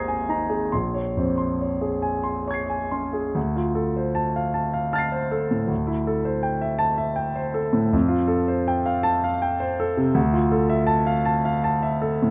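Swaying in a rubato 6/8 at roughly 44-56 BPM in dotted quarters, this fragment of a longer impressionist classical piece for solo piano sets a nocturnal, hazy mood, drifting through lush extended chords in Bb minor before shifting to D minor at 3.4 s. The concert grand sits up front with a clear, natural tone and a deep bass, ranging from Ab1 to C7. Close, detailed microphones capture it inside a recital hall whose moderate reverb lingers around the harmonies.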